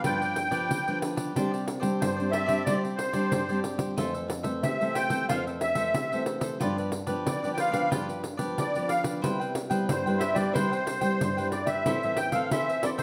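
A reedy, shimmering musette accordion carries the melody from the first second, bathed in plate reverb and set up front, over crisp picked cavaquinho, a thumb-plucked classical nylon-string guitar and a close, dry, jingly pandeiro in this sunny, lively samba and choro cut from a longer piece. At 91 BPM in C major, the harmony moves through G7, Csus2, Fmaj7 and Cmaj7 before turning to A minor at 11.9 seconds as a new section begins. The studio space adds a moderate, roomy reverb around the ensemble.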